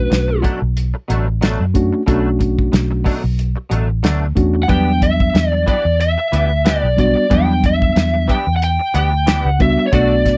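An overdriven lead guitar, dark and up front, sings a brooding, mournful melody over a straight-eighth soul blues at 92 BPM, dropping out after its first 0.4 seconds and returning at 4.6 seconds, while a reedy electric piano, a round, foam-muted fingered bass, a cloth-damped thuddy drum kit and a quieter, twangy, chorused clean guitar stabbing in the background move from Bm7 to Em7 in this dry, close 1970s-style studio excerpt.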